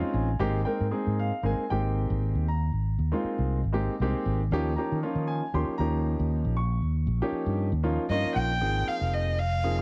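Soaring and funky, this short cut from a longer electric jazz fusion piece swings lightly on its sixteenths, opening with a quick grand piano fill before the smooth, vintage-toned piano settles into accompaniment over an amped, warm fretless electric bass, both up front. The harmony moves from Abmaj9 to Eb9 and resolves on Ab69 at 8.6 seconds. A single dark, woody bowed violin with vibrato enters up front at 8.1 seconds to carry the melody, all set in a light reverb with small room ambience.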